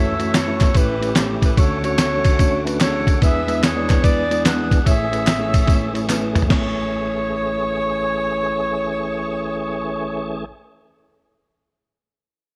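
Soulful and uplifting, this short excerpt of uptempo gospel swings at 146 BPM in A major, with a tight, up-front saxophone section carrying the jazz-style melody with vibrato over a mellow, clean tine electric piano and a full tonewheel organ holding sustained chords through a slow rotary speaker and chorus vibrato. A thumpy, muffled, pitched-down sampler-style drum kit sits up front and loudest, joined by band-limited vintage maracas and group handclaps, and both drop out shortly after a drum fill at 6.1 seconds, the drums around 6.6 seconds and the percussion around 6.8 seconds. The second section opens at 6.5 seconds and leaves saxophones, electric piano and organ to carry on in a dry sound.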